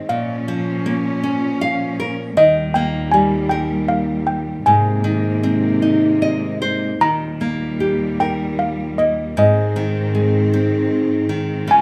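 A gentle, rubato 6/8 feel carries this innocent children's lullaby, where mellow, damped handbells struck with soft clappers sing the melody up front over bright, fingerpicked nylon-string guitar accompaniment, which adds short fills at 1.2 and 5.8 seconds, and lush bowed strings with vibrato hold sustained chords, all set in a moderate recital hall reverb in this short excerpt from a longer piece.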